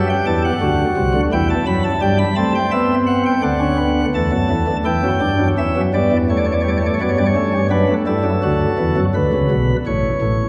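Classical, baroque-style three-part fugue at 84 BPM in 4/4, a joyful and stately excerpt cut from a longer piece in which a solo pipe organ with sparkling, chiffy flute stops in a light baroque voicing sits up front across a range from A1 to B5, moving from A5 and D7 through G, Em7 and D/F# to Bm7 at 9.2 seconds, all bathed in a long, wet church reverb heard from further back in the room.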